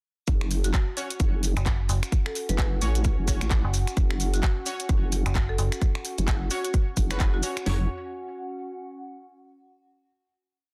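A swung 130 BPM four-on-the-floor groove in 4/4 drives this gritty, swaggering bass house piece in F# minor, with a layered garage kit pairing a tight kick and cracking snare with toms and hi-hats, while a quieter second kit adds finger snaps, handclaps and programmed hats, and maracas shake grainy sixteenths in the background. Up front, a nasal vowel-sweep wobble bass saturated through tube drive pumps against the kick with changing wobble speed, joined from 1.6 seconds by a metallic FM bass playing chopped phrases on a low F#. Bold, punchy orchestra-hit-like synth stabs cut through with sparse, bright chord hits carried by tape echo and reverb. Further back, a marimba with medium mallets offers short woody phrases roughened by 12-bit sampler grit, as a warbling, nostalgic tape-like pad drifts through slowly shifting dark chords. After the drop ends at 7.7 seconds, the pad rings on as a final chord to 9.5 seconds, all within a dense, heavily limited modern master.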